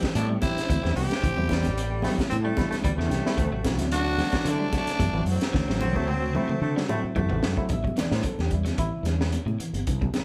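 This short cut from a longer afrobeat piece sounds like a band playing live together in one large studio room, with a moderate reverb around the players. A crunchy, saturated breakbeat kit sits up front with a punchy kick, a high-tuned snare and a dark, rolled-off top, while a punchy fretless bass and very quiet, thin-skinned congas keep the swung sixteenth-note groove driving and hypnotic. A breathy, raspy tenor saxophone carries the melody over Am7 and D7, with a bright alto saxophone in the background and a clear, forceful baritone saxophone with vibrato joining the horn lines at 1.5 seconds. Behind them, a slightly broken-up electric guitar picks tremolo-laden arpeggios, a clean electric guitar adds very quiet fingered stabs, and a reedy electric piano with fast tremolo fills out the accompaniment. After a drum fill starting at 5.5 seconds, the horns drop out and the electric piano takes a solo from 7.7 seconds as the harmony returns to Am7.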